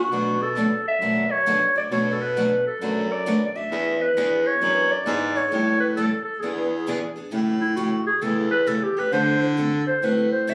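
Captured on a phone in a lively club room, this short cut from a longer piece carries a compressed, roomy sound with moderate reverb around the players. It is lively, playful acoustic string swing in the jazz manouche style, with a loping swung eighth-note feel. A growling clarinet leads the melody up front, raspy and gritty with scooped notes, light vibrato and a vintage character, its tone given extra sheen by plate reverb. Beneath it, a baritone saxophone carries the bass line with a soft-attack subtone and vibrato, while two picked steel-string acoustic guitars supply bright accompaniment over changes moving from Bm7 through E7 to A7, one concert-toned and the other boxy, parlour-like and marked by finger squeak. The second guitar drops out at 7.0 seconds, and from 7.3 seconds the clarinet takes a solo as the harmony shifts between A7 and D7.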